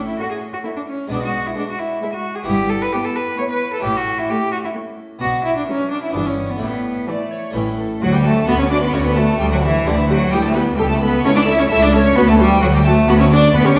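Brilliant and lively, this baroque-style concerto movement in triple metre is cut from a longer piece, with a solo cello standing up front as the featured voice. The soloist plays a single bowed line with a nasal, reedy gut-string tone and light vibrato, entering at 0.1 seconds and carrying the melody across its middle and high registers. A rich chamber violin section plays a high melody of its own with a smooth top, while a second violin section, close and in the background, traces a supporting line beneath. A dark viola section fills the inner accompaniment, and the bass is anchored by a shadowy cello section and a double bass section, all played in period style. An airy French-style harpsichord with three sets of strings plucks a full continuo under the ensemble, and the group moves from an opening section into a new one at 8.0 seconds, where the harmony settles back toward D. The whole performance sits in a wet recital hall reverb, recorded in a church or concert hall.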